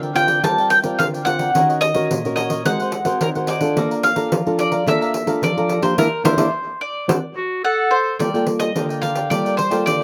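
A straight four-beat samba-choro groove starts at once, driven by a jingly pandeiro with a small-room sound and an up-front, thumb-plucked classical nylon-string guitar whose finger squeaks come through. A mellow, crisp cavaquinho picks its accompaniment underneath with a slapback echo, while a bowl-back mandolin takes the melody almost immediately, its warm double strings picked at the front of the mix and also carrying slapback echo. The mood is nostalgic and bittersweet, and the harmony moves through seventh and ninth chords. A band accent runs from 6.0 seconds, and at 7.4 seconds a bright, vintage clarinet with a soft attack adds a brief classical-style second line, up front and echoed, before stepping away at 8.2 seconds as a new section begins. Recorded outdoors with light reverb, this excerpt is cut from a longer piece.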